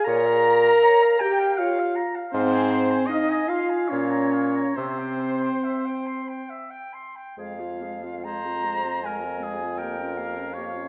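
A wet recital hall surrounds this slow, solemn wind quintet movement in F minor, a yearning fragment cut from a longer piece that moves in a rubato three-four at around 66-80 BPM. The silver concert flute carries the melody with an airy, distant tone, vibrato and tongued notes, while the oboe adds a second line with light vibrato, and the up-front, mellow French horn shares the accompaniment with a roomy clarinet. The bassoon enters at 0.1 s with a soft-attacked bass line, and a new section begins at 7.4 s.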